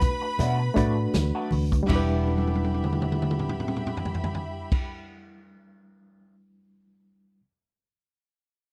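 Dry, close 1970s-style studio sound frames this brief cut from a lush soul piece, silky and bittersweet, moving from Bm7 to Em7 at 1.9 seconds. A barky, reedy electric piano with light overdrive and fast tremolo carries the accompaniment, joined by a slightly broken-up, lo-fi wah guitar riff, a dark, round foam-muted fingered bass, bowed violins in smooth vibrato as a second line, and low-tuned congas played very quietly with soft hands. Up front, a punchy acoustic drum kit with a rolled-off top plays a fill from 2.3 to 4.7 seconds, and the electric piano rings on to 7.4 seconds.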